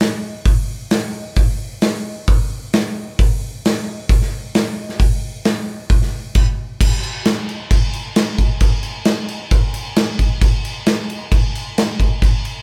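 A dry room recording of a band playing live captures a big acoustic rock drum kit sitting up front, with a punchy kick, a medium-tuned snare, hi-hat and crash cymbal. This dark, epic metal excerpt moves in a straight 4/4 feel, with the drums playing from the start through 12.5 seconds and the music shifting into a new section at 6.8 seconds.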